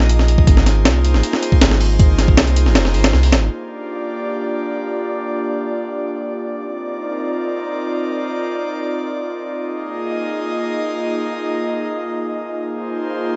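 Frenetic yet nostalgic, this drum and bass and jungle excerpt at 158 BPM opens on a drop, where a gritty, compressed breakbeat kit with a thumpy kick and high-tuned snare drives alongside a deep, round dub sub bass until both stop at about 3.5 seconds. An airy, breathy pad with chorus and a bright noise layer holds sustained chords throughout, moving from Ab69 through Gm7, Cm11 and Bb7sus4 before returning to Ab69 at 12.6 seconds. The mix carries light reverb and a soft top end that rolls off above 7.9 kHz.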